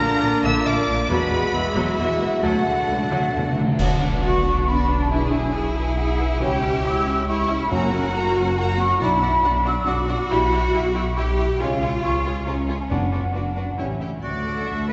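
A church-like reverb bathes this soaring, heroic film-score excerpt at 138 BPM in 3/4, which opens in D lydian and turns to B minor at 3.8 s, where a mellow, hollow flute group takes up a second line alongside the lush, vibrato-rich violin melody, a second violin line, clear violas, and a rich bass of cellos and up-front double basses. Background French horns hold sustained chords, while a vintage-toned trumpet punches stabs and a clear solo oboe adds a second line in the opening bars. A timpani fill on soft mallets from 2.4 s leads into a band accent, with dark cymbals, concert bass drum and triangle entering at 1.1 s and returning for the closing D chord.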